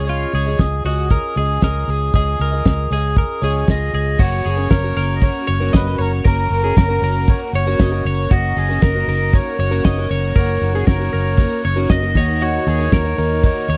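Jangly indie pop at 117 BPM in F# major, nostalgic and breezy, where a reedy, nasal melodica carries the tune over a shimmering, octave-doubled picked twelve-string acoustic guitar, twangy arpeggios from a twelve-string electric guitar, a round, foam-muted fingered electric bass, and a fat-snared, cloth-damped thuddy drum kit with dark cymbals up front, while a very quiet warbling string machine of violins adds sustained chords from 4.2 seconds in a dry, close 1970s-style studio sound.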